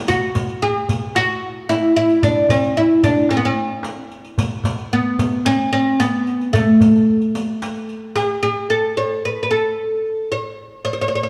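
Warm and stately, this short excerpt of Arabic maqam ensemble music moves at 112 BPM in a straight 4/4, set in maqam rast on A. The up-front oud carries the melody throughout, its plectrum-plucked double strings sounding woody and deep as the fretless line ranges from A3 up to a quarter-tone-inflected C5, and it continues alone after the percussion drops out around 8.6 seconds. Beneath it, a crisp, close metal-shell darbuka played with soft hands and a quieter riq with dark jingles and hard hands keep time in a moderate concert-hall reverb.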